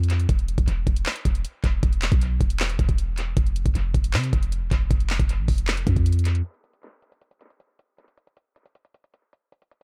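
The rhythm sits in a half-time 4/4 trap feel at 156 BPM, giving this eerie, melancholic hip hop fragment a slow, heavy pulse. An electronic trap drum kit with a knocking kick, bright hi-hats and handclaps sits up front, its sound tape-tinged and treated with tape echo. A clean, sine-like 808-style bass, deep and boomy with a fast attack and a dark, decaying tail, sits equally forward and ranges from E1 to C3. At 6.4 seconds the bass stops and the drums carry on alone until 9.8 seconds, while a filter sweep runs through this closing stretch. The mix is dry in terms of room sound but echo-heavy and low-pass filtered, and the passage is cut from a longer piece.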